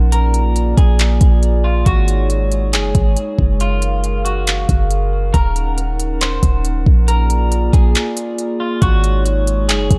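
A half-time 4/4 groove at 138 BPM from a tape-tinged R&B drum kit, with a knocking kick, smooth hi-hats and handclaps up front beside a deep, boomy sine 808 bass, anchors this dreamy, floating cloud-rap excerpt, where a glassy, ethereal glass harmonica holds slow-blooming, sidechain-pumped chords over Bb7, Ab7sus4, Gbmaj9 and Ebm7 while a dark, picked clean electric guitar melody drifts through spring reverb, delay and a low-pass filter, all in a dry room with a break at 8.0 seconds before a new section begins at 8.8 seconds.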